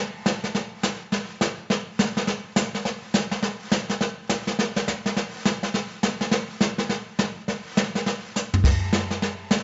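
This short excerpt from a longer country piece opens with a jazz brush drum kit alone, entering at 0.3 seconds and carrying a cheerful, swinging feel at a brisk pace in 4/4. Brushes on the snare set the swing, joined by hi-hat, kick drum, toms and crash cymbal, with the dark cymbals and a medium-tuned snare giving the kit its character. The kick has a boomy weight, while the drums sit up front with an airy, polished small-room quality. A wet studio reverb surrounds the sound, and the top end is rolled off for a mellow overall tone. Near the close, a drum fill arrives at 8.3 seconds before the kit stops at 9.6 seconds.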